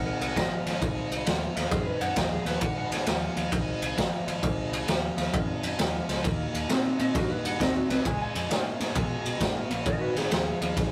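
A raw, up-front garage drum kit with a punchy kick, high-tuned snare and ride cymbal drives this laid-back, swaggering electric blues shuffle at 132 BPM in Ab, as a dark, slightly broken-up electric guitar riff through a small old amp sits over round fingered bass, while a clean lap steel guitar played with fingerpicks and slide adds a background second line from 0.0 to 4.1 seconds and again from 7.0 seconds, all in a rough rehearsal-room recording with light reverb and saturation.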